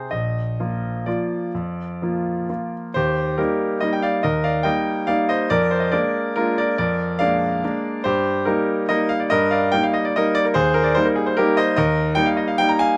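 A bright concert grand piano opens alone on a Bb chord and carries this graceful, sparkling classical waltz in Eb major at a flexible, rubato 121-156 BPM in 3/4, its polished, up-front tone reaching from deep bass to brilliant treble under light reverb as the harmony moves through Eb, Bb7/F and Eb/G before settling on Eb near 10.6 seconds in this 13-second fragment of a longer piece.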